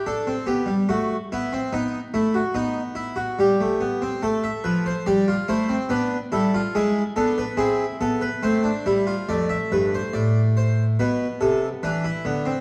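A close-miked, French-style harpsichord with two sets of strings carries this excerpt alone, its plucked tone full and up front, ranging from F2 to E5. The piece is a baroque-style four-part fugue in A minor, cut from a longer work and moving at 71 BPM in a straight 3/4, with a mood both driving and contemplative. The harmony passes through chords such as B7, Gadd9 and E7/G#, settling on A minor at 4.2 and 8.4 seconds before a new section opens on F at 9.3 seconds. The instrument's own sound is dry, yet a recital hall's reverb surrounds it, and the dark production adds a layer of vinyl crackle. The clip runs 12.6 seconds and ends on an E7 chord with its third omitted.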